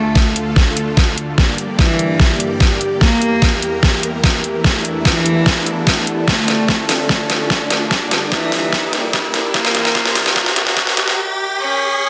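Heavy wobble dubstep in D minor at 147 BPM with a half-time feel, this aggressive, chaotic build-up from a longer piece sets a reedy, gut-string cello melody from a single player with digital delay against huge, detuned supersaw chords that pump with the sidechain, while a riser and a dark, chorused ambient pad sit in the background. An overdriven, knocking electronic kick and an up-front kit of deep snare and metallic hats drive a drum fill through the section, with a filter sweep running across the whole passage. The chords cycle through Dm, Gm, Edim and Asus4/E before dropping out at 11.2 seconds, leaving the cello and riser to ring to 12.1 seconds in a moderate plate reverb under a dense, heavily limited master.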